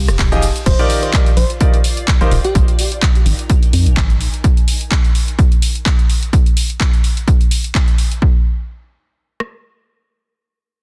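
A dark, hollow, organ-like FM bass with sidechain pumping opens this euphoric, joyful piano house excerpt at 127 BPM in Eb major. It is joined by a punchy, tape-warm house kit with an up-front kick, rim click and soft-clipped snare, plus a second layer of cabasa, handclaps, hi-hats, ride, crash and rim click. A clear, polished concert grand riff with short sustain, low-pass filtering, pumping and delay ends by 2.3 seconds. A sparkling, bell-like electric piano melody with chorus, tremolo and delay glints in the background, and a blurred, evolving granular pad fades out by 4.4 seconds. After that the drums carry on alone until 9.5 seconds in a dense, dry, heavily limited mix.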